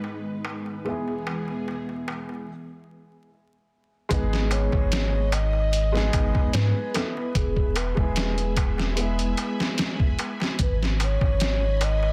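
Trip hop excerpt, brooding and hypnotic, in which a dark, woody upright piano with harmonic tremolo and tape echo, a full-bodied vintage string machine cello pad with ensemble chorus and a crisp, metal-shell darbuka played with soft hands open the track, before a pure, breathy sine lead with vibrato and portamento, a deep, round dub sub bass and a muffled, overdriven sampler-style drum kit with a thumpy kick enter at 4.1 seconds, the piano falling away at 10.6 seconds, under vinyl crackle in a dense, heavily limited modern master.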